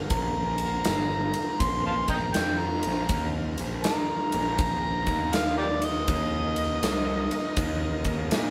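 Brooding and heavy, this brief cut of swung blues rock and southern rock at 80 BPM features a gritty, overdriven harmonica solo with tongue slaps and scooped notes over a growly fuzz bass, a punchy arena drum kit with bright cymbals in a pumping hall, and a thick organ holding sustained chords through a slow rotary speaker in the background, all played live in one room with light reverb.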